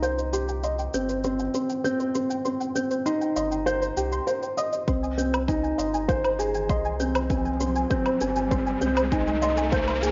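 A mellow, thick-felt upright piano riff sits up front with digital delay in this hypnotic, intimate piano and strings electronica build-up, over soft, round plucked arpeggios carrying chorus, cassette-tape colour, sidechain pumping and delay, a deep sine sub bass that pumps with the sidechain, and an overdriven shaker and woodblock, while an overdriven electronic kick enters at 4.9 seconds and an electronic riser arrives at 6.3 seconds, all set in a lush hall reverb with a softened top end.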